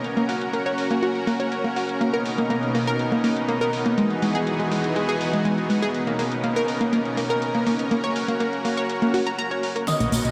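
Progressive house in a hopeful, expansive mood, where a lush, detuned supersaw pad with 12-bit sampler grit and a round, chorused analog pluck on tape-flavoured delay arpeggios ride over metallic-hatted, overdriven deep house drums through Bmaj7 and Emaj7 changes in a dreamy hall-reverb mix, until a drum fill at 9.9 s brings in a thick unison lead, a soft warbling FM bell, jingly tambourine, ringing woodblock and congas, and a punchy, funky analog bass at 10.0 s, with a very quiet riser at 10.2 s.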